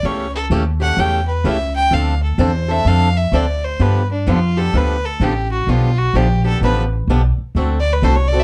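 Playful and charming, this short cut from a longer acoustic string swing piece moves at 128 BPM in 4/4 with a lilting swung eighth-note feel in the jazz manouche style. A rich fiddle carries the melody as a solo throughout the 8.4 seconds, its bowed tone biting and a little nasal, with light vibrato and an airy, earthy quality heard close and up front. Underneath, a picked swing-style acoustic guitar supplies the accompaniment with a bright, boxy sound from fresh strings. An upright bass anchors the low end, plucked on gut strings with a woody, thumpy character and sitting a touch louder than the other parts. The harmony moves from A7/C# through Dm7 and G7 to D7, and the whole is framed by light reverb in a dark, warm production.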